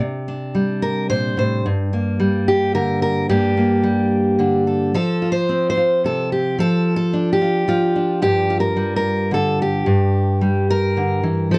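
Intimate and wistful, this short folk excerpt in G minor at 110 BPM in 3/4 features a lone fingerpicked steel-string dreadnought acoustic guitar, dark and full-bodied and up front in a close, detailed recording with light reverb, moving through chords from Csus2 and Gm to F5, Dm/F and Gm7 before the cut at 11.6 seconds.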